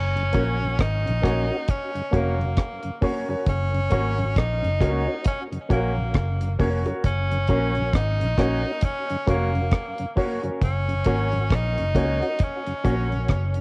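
A slow, swung 67 BPM roots reggae groove in F# major rests on a dry, dark drum kit with a tight kick, hi-hat and rim click, sitting up front beside a round, foam-muted fingered electric bass. An edgy, forceful tenor saxophone carries the uplifting melody with vibrato and scooped notes, colored by cassette tape and tape echo. Further back, a mellow tonewheel organ with chorus vibrato and slow rotary speaker, a bright, twangy envelope-filtered guitar and a polished grand piano playing stabs fill out this home cassette recording with light reverb and studio ambience, with the guitar and piano stopping at 13.1 seconds in this short excerpt of a longer piece.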